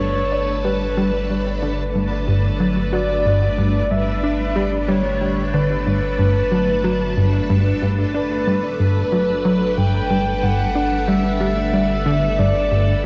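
Awash in a lush hall reverb and the warbling pitch drift of worn cassette tape, this short cut from a longer piece of ambient, sequencer-driven space music feels expansive and cosmic. A punchy, funky analog bass riff with a fast, decaying filter pluck sits prominently in the mix, colored by subtle chorus, shimmer reverb and tape echo. Above it, a breathy, flute-like synth lead carries the melody with a soft attack and vibrato, bathed in chorus, shimmer reverb and tape echo. A full string machine ensemble sustains vintage-toned chords through phaser, ensemble chorus and shimmer reverb, its moving notch lending the pads a shifting texture. Underneath, a deep, round sine sub bass holds a single low note, and all four parts play together throughout the 13.1 seconds over a single Gadd9 chord.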